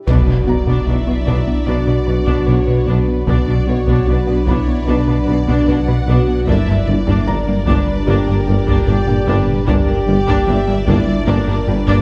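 Brooding and relentless, this cinematic cue from a hybrid orchestral and electronic film score moves in a steady, straight 4/4, shifting from B minor to G minor at 6.5 seconds. The low end is heavy and layered: a round analog bass riff and a deep sine sub bass sit beneath very quiet, distant cellos, double basses and a solo tuba, while hard-stick taiko drums hit close and dry, and an electronic impact sounds in the background until 3.3 seconds. Mellow, roomy French horns and dark, very quiet trombones hold sustained chords, and a tight, driving sequenced synth with a filter pluck, chorus and phaser runs arpeggios at a low level. The warm studio violins carry a smooth, even melody with vibrato, supported by a focused second violin line on a single note and an intense, lush viola accompaniment. A cloudy granular pad with a moving notch and a slow attack enters at 1.1 seconds, and a felt-muted upright piano with audible action noise adds soft, intimate texture through a delay. 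The production is dark, set in a moderate scoring stage reverb, and the piece is cut from a longer work.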